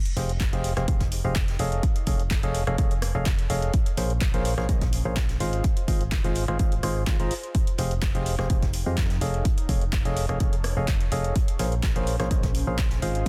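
A hollow, percussive organ stab with chorus, tape echo and sidechain pumping drives this soulful, energetic piano house excerpt in F minor at 126 BPM, over a round FM bass that pumps in step, an up-front tape-warm kick, an overdriven analog drum machine of handclaps, hi-hat and rim clicks, faint airy brushed kit, and a very quiet warbling, nostalgic pad that enters at 1.1 seconds, moving through Fm9, F7alt, Bbm9 and Ab6 in a dense, heavily limited modern master.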